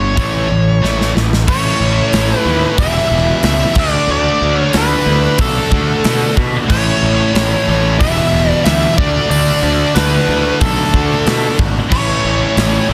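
An aggressive, driving hard rock excerpt at 92 BPM opens with a biting, overdriven lead guitar carrying the melody with slapback echo over a growly, fuzz-laden bass and two bright high-gain guitars grinding out the riff, while a tight metal kit with bright cymbals and a pumping big-room sound kicks in at 0.2 seconds, fills from 0.8 to 1.5 seconds, and a double-tracked sludgy guitar joins at 1.5 seconds as the dense, heavily limited mix cycles through A, Em and D.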